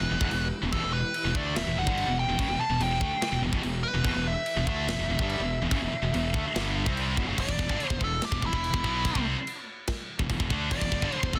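Relentless and epic, this heavy metal passage in E minor at 144 BPM puts a nasal, overdriven lead guitar with a parked wah and digital delay up front over a tight acoustic metal drum kit with china and crash cymbals, a growly fuzz fingered bass, heavy and scooped high-gain rhythm guitars plus a double-tracked overdriven guitar riffing in the background, and a very quiet, silky analog string pad that drops out at 7.3 s, with the double-tracked guitar stopping at 7.4 s as the lead breaks into a solo, all in a dense, heavily limited, dry modern master.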